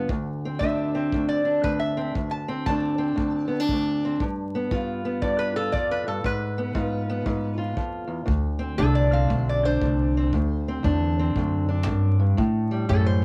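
Gritty and laid-back, this swung acoustic country blues fragment puts a metallic, nasal lap resonator guitar, played slide with a steel bar and fingerpicks, up front from 0.6 seconds over a dark, boxy fingerpicked parlour guitar and a smooth, punchy brushed kick that shares the resonator's cassette-tape colouring, before a woody pizzicato upright bass on steel strings joins at 8.3 seconds, set in light reverb with the vinyl crackle of a home cassette recording.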